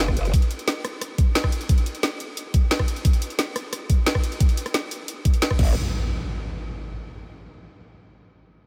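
Dark technical drum and bass at 177 BPM, mechanical and futuristic in this short cut from a longer piece, where an overdriven, knocking electronic kick and a layered drum kit with a woody snare, bright hi-hats, rim clicks and crash cymbal drive the straight 4/4 groove up front, while a growling, saturated bass with formant-filtered wobble and chorus bursts in only at the opening and again at 5.6 s, when an electronic impact hits and carries on into the light digital reverb of the closing moments.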